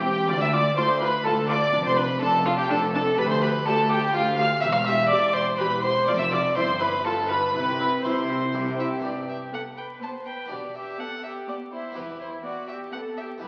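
Heard through the crackle of a very old 78 rpm record in a reverberant recital hall, this brilliant, festive baroque-style concerto movement in 3/4 at 124 BPM moves from C major to G major at 9.0 seconds, with an airy-bowed, nasal solo violin up front and a smooth-topped, gut-strung violin section sharing the melody over a close second violin line, a dark viola section and studio cellos in the background, a rich double bass section that drops out at 9.0 seconds, and a very quiet, dry Flemish-style harpsichord with octave strings.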